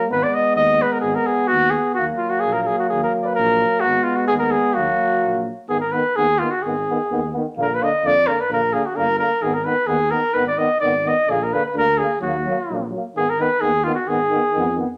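A lightly swung 2/4 pulse at 129 BPM drives this fiery, restless Balkan brass band fragment, cut from a longer piece and tuned slightly low at A4 = 437 Hz. Up front, a mellow cornet carries the melody between F4 and Eb5 with light vibrato and a smooth top, in a classical style. Beneath it, two euphoniums fill out the accompaniment: one vintage and warm in the Bb3 to Cb4 range, the other soft in attack, distant and roomy in the background around D3 to Ab3. A dark, close-miked tuba holds the bass from G1 to F2, entering at 0.1 seconds. The harmony circles Abm and Ebm before Bb chords push the second section from 5.7 seconds onward, all set in a moderate large studio reverb.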